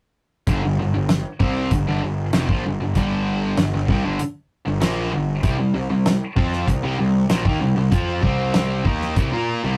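Classic rock with a driving, confident straight 4/4 feel, cut from a longer piece, where a sludgy, dark overdriven guitar sits up front beside a bright, tight distorted guitar, both picking riffs over G5 then C5 from 0.5 s, while a fuzzy, overdriven picked electric bass holds the low end and a damped 70s acoustic kit with a fat snare, tight kick and hi-hat plays dry and forward in a rough rehearsal-room recording with modest booth ambience.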